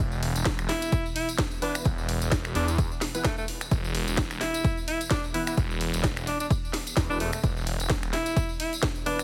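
Swaggering and aggressive, this bass house excerpt is driven by a thick, swirling detuned saw bass with phaser, tube saturation and sidechain pumping sitting up front, a punchy electronic kick, and a garage kit of finger snaps, hi-hat, ride and a cracking snare, with a jingly acoustic tambourine on top. A bright alto saxophone carries the melody with vibrato from 0.7 seconds, roughened by 12-bit sampler grit and delay, while a hollow, percussive organ stab with chorus and delay joins in the background at 1.6 seconds. Beneath it all, a deep, moody analog pad holds very quiet sustained chords, and the mix has light reverb and a heavily compressed radio sound.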